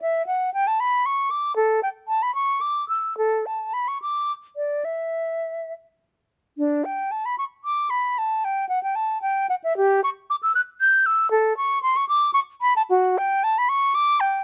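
In a 6/8 with free rubato, the pulse moves at roughly 68-79 BPM in dotted quarters, giving this short passage from a longer piece a flowing, serene character. It is a classical, baroque-style fantasia in D major for unaccompanied concert flute, tuned slightly low at A4 = 438 Hz. The flute plays solo throughout, ranging from D4 up to G6 with a pure, warm tone, vibrato and soft attacks, and its phrasing is expressive. The music falls into two parts, with a new section beginning at 6.6 seconds and continuing to the close at 14.4 seconds. Close, detailed microphones and barely any reverb place the flute up front, so every nuance comes through clearly.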